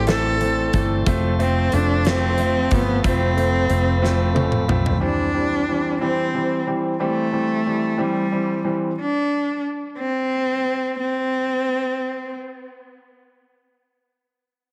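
A heartfelt, tender six-eight pop ballad excerpt opens with a bowed cello carrying the melody, its focused, vibrato-rich solo line up front and touched with tape echo. Beneath it, a tonewheel organ holds piping, scooped chords in the background with audible key click through a stopped rotary speaker. A dark, round, foam-muted electric bass and a huge arena drum kit with a fat snare and punchy kick fill out the opening, closing on a drum fill before organ, bass and drums all stop at 5.0 seconds. An intimate concert grand piano, present and polished with deep bass and audible action noise, keeps accompanying the cello until 8.9 seconds. The cello then carries on alone as the music slows down, ending at 12.4 seconds. The whole mix has a heavily compressed, radio-like sound in a small room with light reverb.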